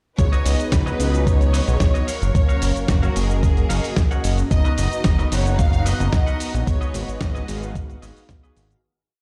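Played through a big sound system in a bare stone room, this short, feel-good nu-disco piece at 111 BPM sounds dry, moving through C#9sus4, F#maj7, Bmaj7/F# and G#m7 before fading out from 6.0 seconds. A thumpy, gritty four-on-the-floor kick and a fat, syncopated sawtooth bass riff sit up front, while a dusty sampler-style kit with hi-hat, shaker and a medium-tuned snare carries a disco backbeat. Mellow, detuned synth brass pushes held chords with 12-bit sampler grit and sidechain pumping, a lush string pad pumps in the background, a clean semi-hollow guitar plays a funk chord rhythm with slapback echo, and a biting violin section states call-phrase motifs through tape echo until 7.8 seconds.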